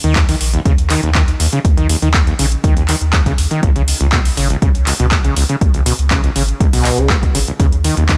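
An overdriven acid bass riff leads this hypnotic, trippy acid house excerpt, its squelchy, gritty sawtooth tone sharpened by a resonant filter sweep, fast-attack decaying notes, distortion, lush chorus, tape echo and sidechain pumping. Beneath it, a deep, round sine sub bass holds sustained, mellow notes that also pump with the sidechain. A booming analog drum machine supplies handclaps and metallic hi-hats with a tape-tinged character and studio reverb. An electronic kick enters at 0.2 s, punchy and overdriven, and sits as the loudest part. The harmony moves from Eb5 to Db5 at 3.6 s and back to Eb5 at 7.6 s in a steady, straight 4/4 groove, captured in a fairly dry room.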